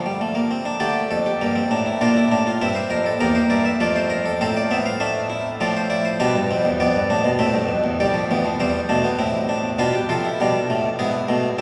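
A long cathedral reverb surrounds this short passage cut from a longer piece, yet the solo harpsichord stays up front, its plucked, round tone coming from a single set of strings on a Flemish-style instrument. The music is a lively, stately baroque-style fugue in four parts, set in three-quarter time and spanning the instrument's low bass to its upper treble. Its harmony shifts at about 8.0 seconds into a new passage that closes on a tense chord at 11.0 seconds.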